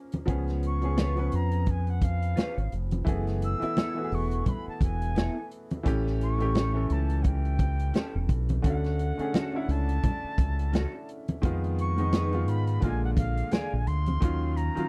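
Lush 1970s-style soul with a smooth, romantic mood at 86 BPM and a gentle sixteenth-note swing, built on a tight, roomy drum kit and a dark, round, punchy fingered electric bass up front, with brilliant, worn grand piano accompaniment, low-tuned vintage congas in the background, a twangy, slightly broken-up electric guitar riff through a small old amp with ensemble chorus entering at 1.0 seconds, and an airy, expressive jazz flute melody with vibrato and chiff floating in from a distance over rich chords such as Db7, Gbm11 and Dmaj7, all in a dry sound with little reverb.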